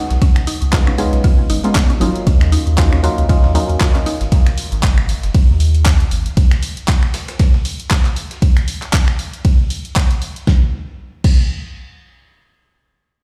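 This deep house excerpt opens straight into a drop, with a hollow, phased organ stab alongside a woody, FM-style mallet pluck sitting in the background, both pumping against the kick and trailing dub echoes over Db9 and Ebm9 chords. Within the first moments a round, sine-based sub bass arrives up front alongside a deep, tape-saturated electronic kick, while a layered house kit adds a fat snare, hi-hats, handclaps, finger snaps, ride and crash cymbals. Underneath, a very quiet, gritty breakbeat kit with a medium-tuned snare adds an overdriven texture. The stab and pluck drop out at 4.1 seconds as the harmony moves to Ab5, and the bass carries on until 6.3 seconds before the chords give way entirely. At 117 BPM with a light 16th-note swing, the mood stays warm and hypnotic, heard with little reverb as if played on a big system in a bare stone room, the kick and house kit running on until 11.4 seconds.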